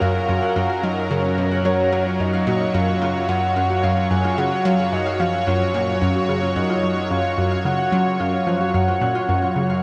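A straight 4/4 pulse at 110 BPM carries this luminous, cosmic passage of sequencer-driven ambient space music in F# major, cut from a longer piece and resting on a single F#maj7 chord. A thick, warbling, up-front unison pad holds sustained chords beneath a soft, round octave-layered synth lead with tremolo and vibrato, while a fast-attack analog pluck with ring modulation and a filter sweep repeats a low riff through tape echo. In the background, a ringing, fingerpicked Celtic harp spins arpeggios, while a very quiet, resonant stepped-filter texture bubbles, all bathed in a huge, wet reverb with a cassette-tape character.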